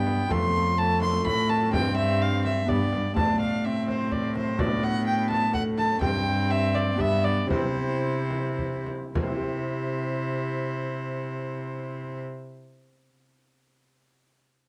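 Stately and courtly, this renaissance-style consort dance in 3/4 and C major moves at 102-127 BPM and slows between 5.3 and 9.2 seconds, with a nasal, gut-string violin carrying the melody up front over a rich viola second line with light vibrato and a reedy cello bass, while a bright, ringing Celtic harp accompanies in the background and a deep, distant frame drum plays until 9.4 seconds, all set in a moderate stone room within a dark production.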